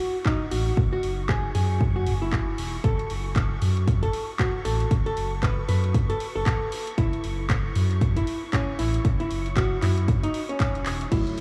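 A punchy, tape-warm electronic kick sits up front in this moody, deep house excerpt at 116 BPM, swinging on the 16ths in F# minor over a single F#m7 chord, with a clean, dark hollow-body archtop guitar carrying the melody through vintage 12-bit sampler grit and a diffuse ambient delay. A layered house kit of crash, handclaps and warm hats feeds a drum fill at 10.9 s, while a full, sine-based sub bass with an octave layer runs through tube saturation and sidechain pumping, and a silky string machine hovers softly in the background with phaser and ensemble chorus. A dark, full-bodied chord stab with chorus and a filter sweep lands briefly at 11.1 s, all set in a dreamy mix soaked in a huge, long reverb.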